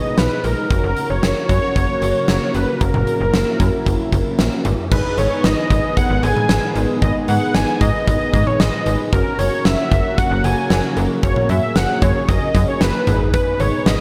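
A bright, wave-folded unison lead with vibrato and slapback echo carries the melody up front in this cool, driving synth-pop excerpt at 114 BPM in G# minor, joined at 0.2 s by a huge arena drum kit with a punchy kick, fat snare, cowbell and toms, and by a snappy, metallic slap-like FM bass, while chorused analog synth brass sits mellow in the background and a lush, detuned unison pad holds slow-attack chords that move between G#m and F#, under light small-room ambience.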